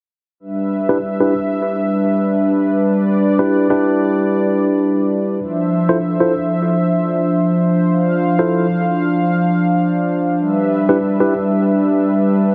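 A swung, loping sixteenth-note feel in four gives this glitch hop fragment a gritty, funky lean from its first moment. A smooth analog pad of detuned sawtooth tones enters at 0.4 seconds with a soft attack, holding sustained chords with a chorus effect, each one lingering on a long release. At 0.9 seconds a bright, clean tine electric piano joins with short stabs, placed direct and up front, its tone rounded by a low-pass filter and trailed by tape echo. The harmony moves from Em7 to Dm9 and back to Em7, all within a single section cut from a longer piece. A moderate plate reverb opens up the space, while the dense, heavily limited modern master keeps the sound full and forward.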